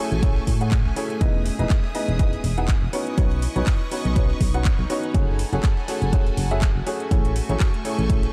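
Piano house at 122 BPM in E major, feel-good and uplifting, this short cut from a longer piece sets a clear, woody, slightly detuned upright piano riff with tape echo over sustained chords from a lush, bright violin section with vibrato, a blurred granular pad in the background, a round, punchy FM bass with tube saturation entering at 0.1 seconds, and a punchy layered electronic kick, house kit handclaps and metallic hats, and a very quiet, gritty pitched-up breakbeat snare, with the piano, violins, pad and bass all sidechain-pumping through Amaj7, Emaj7, Badd9 and F#madd9 in a dark, warm digital ambience.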